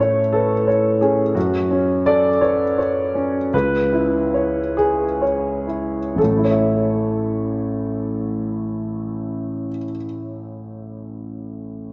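A dreamy mix soaked in plate reverb surrounds a lone grand piano, heard up front with long sustain, a boxy tone, audible action noise and a lush chorus. This intimate, hopeful classical fragment in A major drifts in a rubato 6/8 at 40-60 BPM (dotted quarters). The piano spans A1 to E5 through A, F#m and C#m7, easing its pace from 0.3 to 6.2 seconds, where a new section returns to A before the piece is cut at 11.9 seconds.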